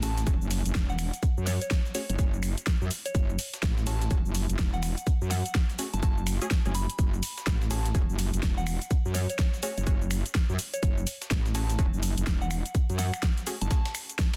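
A swaggering, gritty bass house groove at 125 BPM in F# minor opens on a metallic, aggressive wobble bass pumping up front, a soft, mellow FM bell melody with chorus and digital delay, and nasal, band-passed sawtooth chord stabs under a filter sweep in the background. An overdriven big-room dance kit with a huge snare, cabasa, finger snaps and hi-hat rides a 62% swing on 16ths, while a very quiet sampler-style breakbeat kit adds gritty hi-hat and snare. A punchy electronic kick enters at 0.3 s over the opening F#madd9 chord, all pressed into a dense, heavily limited modern master cut from a longer piece.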